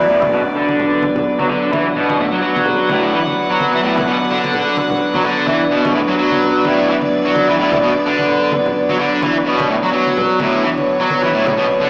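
Energetic, swaggering breakbeat with a swung sixteenth-note feel, cut from a longer piece and sitting on a single minor chord throughout. Up front, a double-tracked fuzz guitar riff sits low in its range, distorted and gritty with a lo-fi sampler crunch, filtered and echoed by digital delay, while a soft, floating chamber string section holds sustained bowed chords that sound pure yet distant. Compressed congas play in the background from 0.2 seconds, an electronic downlifter sounds in the opening 2 seconds, and a lush hall reverb opens the space, though the sound carries a small-speaker quality.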